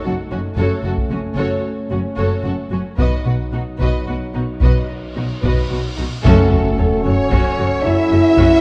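Epic orchestral film score in a dramatic 12/8, cut from a longer piece. A dark violin section carries the melody in the background over a lush second violin line, with rich, close violas, distant mellow French horn chords, and warm cellos and woody double basses holding the bass. Close, hard-stick taiko drums drive from 1.0 s, and a huge cymbal swell and sub drop arrive at 4.9 s, leading to an impact at 6.2 s where very quiet, bright trombones, a brief hard-mallet timpani hit and a soft, hollow stopped-flute chamber organ with chiff join the chords, all set in moderate scoring-stage reverb.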